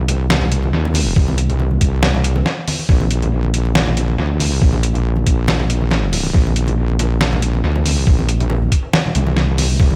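An echo-heavy mix with light reverb frames this cavernous, brooding slice of deep dubstep. It moves at 139 BPM in 4/4 with a half-time feel and a slight swing on the sixteenths. Up front, a heavy, wobbling bass built from sawtooth and sine tones sits low between Bb1 and Eb2; it is saturated, compressed and sustained, with a fast attack and a mellow chorus sheen. A sampler-style trip hop kit is also up front, its hi-hat and medium-tuned snare pitched down, gritty and tape-warm, trailing analog delay. Low-tuned acoustic congas played with soft hands ring in the background through a dub echo. At 1.2 seconds a compressed, thumpy electronic kick joins, and the passage is cut from a longer piece.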